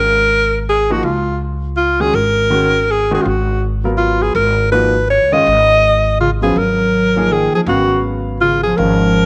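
Spiritual and cool, this brief modal jazz excerpt swings in a lilting 3/4, with a warm, vibrato-laden alto saxophone carrying the melody up front over a woody, growly pizzicato upright bass. A clear grand piano with long sustain joins the accompaniment at 0.9 seconds, and a dark bass clarinet with light vibrato adds a second line from 6.2 seconds. The whole sits in a moderate echo-chamber reverb with small-room ambience, cut from a longer piece.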